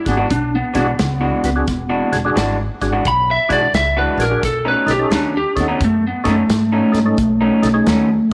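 A swung 4/4 shuffle carries this soulful, laid-back electric blues clip, where an up-front, slightly broken-up lead guitar solos across the full 8.3 seconds over a gritty, overdriven tonewheel organ with chorus vibrato and slow rotary speaker, a woody pizzicato upright bass, a lo-fi electric guitar riff through a small old amp, and a natural country drum kit with punchy kick, snare and hi-hat, as the harmony shifts from E9 to B9 at 4.4 seconds in a small, lightly reverberant room with lossy compression artefacts.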